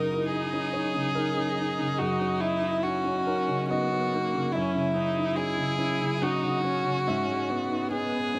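Light reverb surrounds this brief passage, with a faint mains hum beneath it. It is a reflective, longing neoclassical piece for piano and strings in a slow 3/4 at 71 BPM, played with a rubato feel and cut from a longer work. A single bowed violin carries the melody up front, its tone clear, smooth and even with vibrato. Below it, a lone viola plays a rich, expressive accompaniment with vibrato and portamento, set more distantly in the mix. A woody, natural upright piano sits up front, accompanying across a broad register, and all three parts play throughout the 8.4 seconds while the harmony moves from D#m7/F# through F#5 to C#m7/G#.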